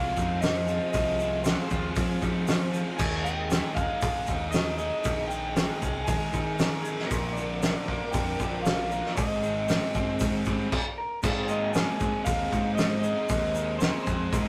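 A loose indie drum kit sits up front with a fat snare, punchy kick and gritty, saturated tone, driving this upbeat yet wistful indie rock cut in Ab major at 116 BPM, with a brief stop from 10.7 to 11.2 seconds before the phrase repeats. Over it, an electric guitar through a small old amp carries the slightly broken-up, lo-fi melody, while a biting overdriven guitar and a raw garage guitar in the background play riffs above a growling, overdriven picked bass. A very quiet vintage organ-string ensemble holds soft chords, and a grainy egg shaker adds texture, all captured as a rough rehearsal-room recording with tube saturation and light reverb.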